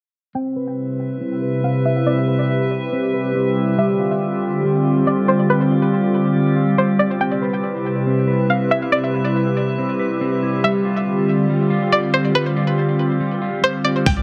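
A clean, dark electric guitar opens this atmospheric cloud-rap excerpt at 0.3 seconds, its fingered arpeggios softened by a low-pass filter and tape echo. Almost at once a twangy, string-like resonator pluck carries the bright melody up front, while a hollow, flute-like pad holds sustained chords beneath it, gently pumping from sidechain compression. From 1.0 seconds a glassy texture of drifting overtones settles in behind them, calm and bathed in its own reverb. The harmony alternates between Cmaj7 and G7sus4 in C major at 140 BPM in a half-time feel, and a filter sweep runs through the whole passage, giving it a floating, blissful mood in an echo-heavy mix with light digital ambience. Only at 14.1 seconds do a deep, boomy 808-style bass and a gritty, pitched-down sampler-style drum kit with a thumpy, overdriven kick and hi-hat arrive, just as the excerpt cuts off.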